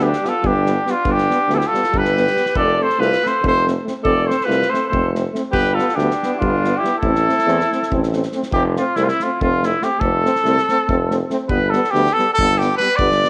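This is Balkan folk played by a brass band, a bittersweet and fiery passage cut from a longer piece, moving at 281 BPM counted in eighths in 7/8 with a straight feel. A roomy trumpet with vibrato carries the melody up front, sounding slightly distant and played in a classical style, while a smooth-topped alto saxophone with vibrato adds a second line until it stops at 8.1 s. In the background, a soft-attacked French horn and a mellow euphonium, both with light vibrato, hold the accompaniment, and a clear, vintage-toned tuba anchors the bass. A loose acoustic drum kit with a tight kick and a medium-tuned snare enters at 0.1 s, carrying a small, pumping room sound. The harmony circles through G, F and A minor across two statements of the same section, and the band sits in a moderate echo-chamber reverb with studio ambience.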